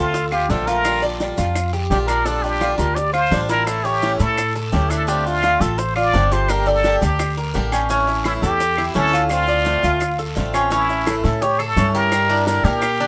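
A straight 4/4 pulse at 170 BPM drives this sultry Cuban son and guajira passage in D minor, cut from a longer piece. Up front, a trumpet with a plunger mute carries the melody in a forceful, jazz-style solo, its brilliant wah-wah tone shaded with vibrato, while the upright bass sits equally forward with a thumpy, gut-string pizzicato that sounds dark and woody. The Cuban tres spins arpeggios with metallic double strings, some doubled at the octave, and a picked swing-style acoustic guitar adds bright, boxy accompaniment until 12.8 seconds. Behind them, round low-tuned bongos and a raspy guiro keep close and dry in the background, grainy, saturated maracas also sit in the background, and very quiet claves are heard in a live room. The harmony moves from Dm7 through Bb6, Gm and A before turning at 10.7 seconds toward A and Em7b5/G, all under a light reverb.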